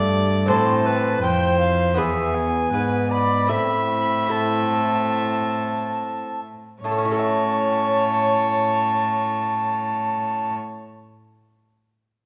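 A renaissance-style consort dance in 4/4 with a straight feel, this courtly, rustic excerpt moves at 68-83 BPM, slowing down through its first 6.8 seconds. A mellow alto recorder carries the melody from 0.5 seconds, its pure wooden tone marked by a crisp, chiffy attack and vibrato, though it sits at a distance. Beneath it, an up-front viola plays a second line with an airy bow and a nasal, reedy gut-string colour, while a close, rich cello holds the bass with the same period-style bowing. A clear, roomy trombone with light vibrato and a delicate fingerpicked lute, its double strings partly octave-doubled, fill out the accompaniment, the lute ringing on slightly past the others to 10.9 seconds. The harmony moves from A minor to E and back, then brightens to A major as the second section arrives at 6.8 seconds, all within a wet recital-hall reverb.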